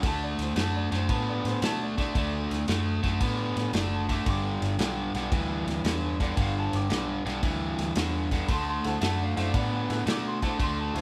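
A crunchy, overdriven guitar riff sits up front from the first moment of this gritty, swaggering electric blues shuffle, cut from a longer piece and joined throughout by a round, foam-muted electric bass, a small-room soul drum kit with tight kick, medium-tuned snare and dark ride cymbal, and a brilliant, woody upright piano accompanying up high, the band playing live in one room with light reverb as the chords move from D to G at 4.3 seconds and on to D9 at 8.5 seconds.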